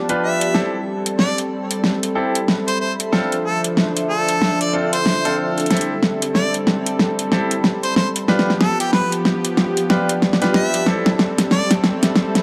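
An overdriven pop drum kit sits up front in this funky, gritty glitch hop piece at 93 BPM in A minor, its fat snare and metallic hats swung on the 16ths through a build-up and drum fill that run the full 12.4 seconds. A clear harmonica carries a smooth, lightly vibrato melody with tape echo, while a bright baby grand piano adds low-passed, echoed stabs. Beneath them, a warbling, detuned analog pad with vintage sampler grit sustains chords moving from G7 through Am7 and Dm7, and a deep, moody ambient pad with chorus and reverb adds texture, all in a light digital ambience.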